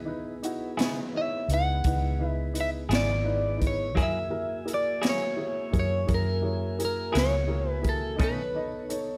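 A lightly reverberant, gritty excerpt of a laid-back slow blues at 57 BPM in 12/8, moving from C#m7 to F#9 and touching B9 near the end. Up front, an electric guitar at the edge of break-up carries the phased melody while a dark, foam-muted fingered electric bass and a punchy, airy big-band drum kit with a high-tuned snare hold the ground. Behind them, a clean semi-hollow guitar with harmonic tremolo and a woody upright piano accompany, over soft, flute-like tonewheel organ chords turning through a slow rotary speaker.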